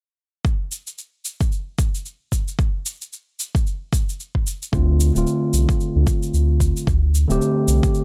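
Organic downtempo with a meditative, earthy mood and a swung 16th-note feel, opening on a deep, tape-colored electronic kick and a small-room shaker from about 0.5 seconds, joined at 4.7 seconds by a mellow tine electric piano pumping under sidechain with analog delay and a round, dark analog bass thickened by transformer saturation, all over a sustained Dm7 in a dry, gritty hardware sound.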